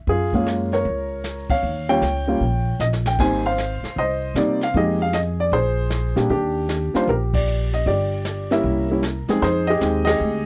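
A relaxed 4/4 swing at 154 BPM, with lilting swung eighths, drives this playful jazz piano trio piece in Eb major, cut from a longer performance. The baby grand piano, natural and up front with a warm tone, carries the melody across a range of F2 to Ab5 over lush harmonies such as Gbmaj9, Abmaj9 and Fm11, settling on Ebmaj7 before turning toward C7b9 and Fm9. Beneath it, the plucked upright bass sounds woody, warm and close, with steel strings. The brush kit sits lower in the mix, with dark cymbals, a medium-tuned snare and a boomy kick, and it adds a brief fill early on. The trio hits shared accents at 1.4, 7.3 and 10.0 seconds, all captured in a dry, intimate 1970s-style studio sound with little reverb.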